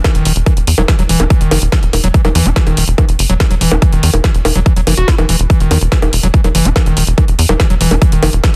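A squelchy, overdriven acid bass riff with sidechain pumping and dub echo drives this hypnotic psychedelic trance excerpt at 143 BPM, over a punchy overdriven electronic kick, a layered drum kit of bongos, bright hats and a woody snare, and a tight, nasal sequencer bass, all set in a dry, dense, heavily limited mix on an E5 chord.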